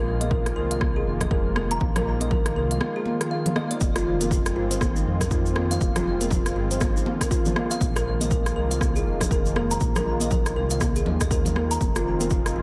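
Afro house at 120 BPM with a swung sixteenth-note feel, this earthy, hypnotic excerpt alternates between Bb7sus4 and Fm7 as a punchy overdriven electronic kick, crisp hi-hats and rim clicks from an afro-pop kit, and damped, high-tuned congas drive under a deep, rumbling detuned saw bass with tube saturation, woody kalimba arpeggios trailing diffuse delay, and a smooth, warbling vintage pad with chorus, all three sidechain-pumped, while a grainy cabasa joins at 3.8 s and a plate reverb bathes the mix in a dreamy haze.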